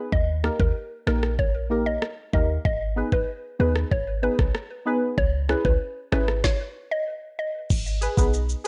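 A woody, warbling mallet-like synth pluck carries the melody with chorus and digital delay in this sultry, hypnotic dancehall excerpt, cut from a longer piece and moving from D# through G#m and C#m7 back to G#m. Beneath it sit a boomy, sine-toned 808-style bass, an electronic island pop drum kit with a knocking kick, metallic hats, rim click, shaker and crash, and a deep, detuned chord stab from 0.4 s with ring modulation, a moving notch and chorus. A stop at 6.4 s briefly breaks the groove, all under light reverb with a soft top end.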